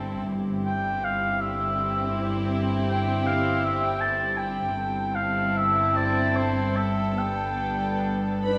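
Soft-attack, sul tasto strings open this slow, rubato cinematic passage in 6/8 at around 48-54 BPM: two violin sections carry a pure melody and a floating second line over an intimate viola section with light vibrato, while cello and rich symphonic double bass sections hold the low G. At 0.7 s a distant, roomy oboe with light vibrato enters up front on its own second line. The harmony moves from C over G to Gadd9 at 7.2 s, and a classical-style clarinet appears briefly at 8.4 s. Wet scoring-stage reverb surrounds this moving, uplifting fragment, which is cut from a longer piece.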